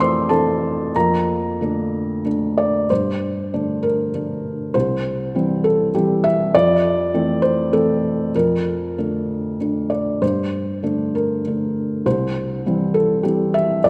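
A felt-muted upright piano plays alone from the start, its thick felt giving a dark, mellow tone with audible action noise, heard up front in this intimate, peaceful neoclassical minimalist excerpt. In a rubato 3/4 at around 90-103 BPM, it spans C2 to D6 and circles through Fmaj7, Bbmaj7/F, Gmadd9 and C, with the second passage beginning at 2.9 s. A moderate concert hall reverb of 2.3 s surrounds the close, soft sound.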